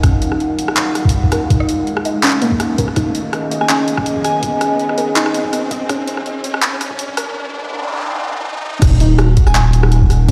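A thick, saturated sine sub bass lands up front at the drop at 8.8 seconds, closing a spacious, cinematic half-time drum and bass excerpt in Eb minor at 164 BPM with a light swing. Before it, a gritty, pitched-down, thumpy electronic kick and an overdriven, layered kit of bright hats, handclaps, rim clicks, tambourine and crash drive a build-up. Meanwhile, a detuned, nasal analog pad pumps under sidechain, a warbling lo-fi pluck arpeggio sweeps through its filter with dub echo, and a riser and noise sweep climb behind. A soft FM bell touches Ab5 from 3.6 seconds, all washed in a huge, long ambient reverb as the chords move from Ebm to Dbadd9/Eb and back.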